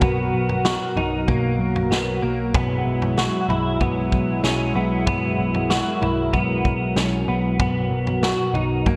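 A straight 4/4 pulse at 95 BPM carries this dreamy, blissful slice of dream pop, cut from a longer piece and tuned slightly above standard pitch. A vintage drum kit of punchy kick, medium-tuned snare and toms sits under gated reverb, its tone natural with a rolled-off top. A foam-muted, picked electric bass holds a low B with a dark, round, amped sound, while a clean electric guitar plays compressed arpeggios up front, colored by ensemble chorus and digital delay. A smooth, detuned sawtooth pad with a slow attack sustains chords through chorus, moving from Bmaj7 to E/B at 2.5 seconds and back to Bmaj7 at 7.6 seconds. All four parts play throughout the nine seconds, framed by a moderate plate reverb, studio ambience and bright 1980s-style digital production.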